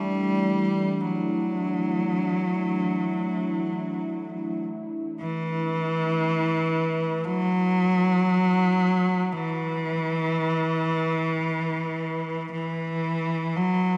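Ambient excerpt in free time, unsettling and desolate, tuned to A4 = 435 Hz and resting on an Esus2 chord. A single bowed cello sits up front carrying the melody between E3 and G3, its biting, nasal tone touched with light vibrato and an airy bow and trailed by analog delay. Beneath it, a detuned sawtooth pad with chorus, slow attack and a filter swell sustains chords through a wet plate reverb, fading out gradually from the start until it ends at 13.6 seconds.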